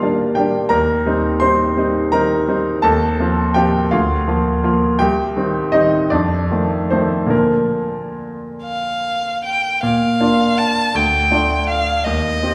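A 6/8 metre, stretched and pulled by rubato, carries this melancholic, solemn romantic duo for violin and grand piano, cut from a longer piece. The grand piano opens alone at 0.0 s as accompaniment, spanning a broad register with a bright, brilliant, natural tone and short sustain, placed up front. Its harmony moves through a slow cadential chain of inverted chords that settles on the home chord before the music shifts into a new passage around 9.8 s and turns toward a minor chord. A single bowed violin enters at 8.6 s to carry the melody high in its range, its rich, smooth, even tone shaded with vibrato and set up front. The pair sits in a generous scoring-stage reverb, heard from further back in the room, which lends the brief duo a solemn, spacious air.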